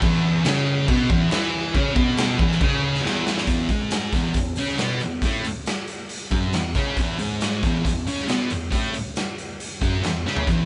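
A thick, double-tracked fuzz guitar riff and a raw, punchy garage drum kit crash in together at 137 BPM in E major, rowdy and swaggering, the kit gritty and pumping in a bright stone room, with a drum fill at 3.1 seconds pushing the riff from E5 power chords onto a full E chord as the band plays live in one room with light reverb and a rolled-off top.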